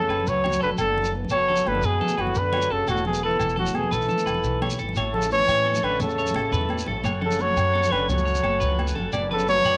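Highlife guitar band music in a straight 12/8 with a sunny, carefree mood, led by a breathy, up-front trumpet melody with scooped notes over a softer trombone second line, a twangy, slightly broken-up electric guitar playing arpeggios with subtle chorus, a very quiet fingerpicked nylon-string guitar, a woody pizzicato upright bass, bright distant congas, ringing agogo bells and a grainy shekere, with a reedy combo organ adding heavily vibrato-laden sustained chords from 5.0 seconds, all set in moderate spring reverb and studio ambience.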